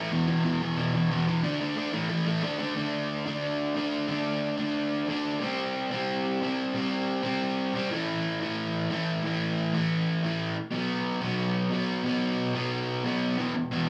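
Angry and aggressive, this punk passage is cut from a longer piece and features a lone electric guitar playing by itself in straight 4/4. The guitar is crunchy and overdriven, picked and double-tracked, and sits up front in the mix, ranging from E2 up to D4. It opens by moving through E5, D5 and A5 power chords in quick succession. At 2.8 seconds the feel drops into half time, and the chords settle onto longer stretches of C5, A5 and B5 before landing back on E5 at 13.4 seconds. A moderate small-room reverb and a touch of studio ambience give the warm tone a close, tight space.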